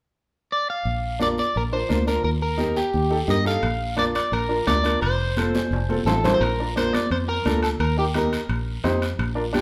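A straight 4/4 cumbia pulse at 173 BPM drives this joyful, danceable excerpt in B-flat major, cut from a longer piece. A twangy, picked electric guitar sitting at the edge of break-up carries the melody up front from 0.5 seconds, its bright tone bathed in spring reverb. A round, foam-muted fingered electric bass and a raspy guiro come in at 0.9 seconds, joined shortly after by a clear, woody upright piano on accompaniment and high-tuned congas with a bright, thin-skinned tone set back in a large room. Metal-shelled timbales with a ringing, vintage, band-limited character enter in the background at 3.6 seconds, and a drum fill leads into a new section at 6.4 seconds. The harmony moves between B-flat, E-flat and F, and the whole band sits in a moderate large-studio reverb.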